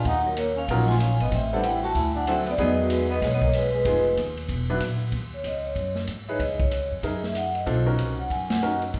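A smoky, late-night jazz fragment in small-group swing and bop style opens with ringing, motor-off vibraphone carrying the melody over woody pizzicato upright bass and a raspy, growling trombone second line that drops out at 4.1 s, while a swinging drum kit with a punchy kick, hi-hat, ride and snare joins almost at once. A clear baby grand piano with audible action noise enters at 0.7 s to comp through a brisk 189 BPM swing in Eb minor, moving from Ebm9 through half-diminished, suspended and major-seventh colors to Bmaj7. A band accent lands at 8.5 s, and the whole group sits in a reverberant recital-hall space.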